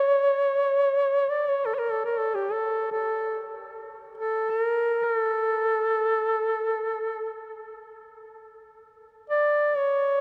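A mellow, close-miked duduk sings a solemn, longing Caucasian folk lament alone from 0.0 to 10.2 seconds, its vibrato-tinged line held between G4 and D5 up front, with tape echo trailing behind it in a vast, wet cathedral reverb, in this brief fragment of a longer piece.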